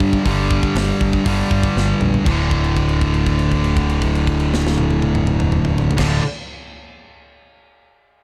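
Heavy metal at 119 BPM in a straight 4/4, this short fragment cut from a longer piece feels aggressive and dark. Two distorted guitars share the riff through the whole clip: one high-gain, bright and up front, the other sludgy and overdriven with a warmer edge, both picked and ranging from D2 to G3. A picked electric bass with a growly, direct tone sits beneath them, running from D1 to G2. A tight acoustic metal kit with bright cymbals, a medium-tuned snare and a tight kick sounds up front in a big room, working across crash, hi-hat, snare and toms. The opening passage rests on a G5 power chord, and a drum fill from 1.8 to 2.3 seconds leads into a second passage on D5, where a held note rings from 2.3 to 6.0 seconds. Light reverb and a dark production give the whole a heavy, brooding weight.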